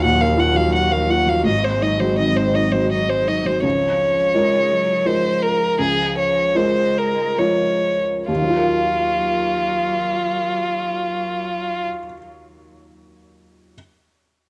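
A clear, up-front single violin carries the melody with smooth, even vibrato over this reflective neoclassical piece in 3/4, a longing passage cut from a longer work in Eb dorian that moves with a rubato feel between 65 and 88 BPM and slows from 2.5 to 8.3 seconds. Beneath it, a felt-muted upright piano gives soft, mellow, intimate accompaniment with audible action noise, and it is the last part still sounding, continuing until 13.8 seconds. A rich bowed cello sits in the background as a second line, expressive with portamento and a soft attack, colored by cassette tape and analog delay. For the opening 3.6 seconds, a bowed double bass, distant and touched by transformer saturation, holds the low end while a very quiet, warbling tape-like pad sustains nostalgic lo-fi chords with chorus. The harmony moves from Ebmadd9 through Ab7 to Db6 before returning to Ebmadd9 at 8.3 seconds, all set in light reverb and studio ambience with the hazy character of a home recording on cassette.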